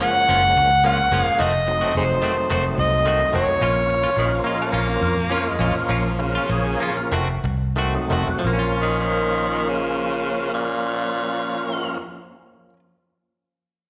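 Soulful, brooding minor-key blues with a light swing, easing from roughly 108 toward 86 BPM as it slows between 3.6 and 8.4 seconds, where a gritty, overdriven harmonica with tongue slaps and scooped notes leads up front until 4.4 seconds, as a raspy, growling tenor saxophone enters with a second line at 4.2 seconds, all set over a thick, key-clicking tonewheel organ through a slow rotary speaker, bright twangy stabs from a clean, direct-recorded electric guitar with harmonic tremolo, and a round, punchy foam-muted electric bass, captured as a live club gig through the venue's PA with plate reverb and slapback echo on the harmonica, organ, guitar and saxophone.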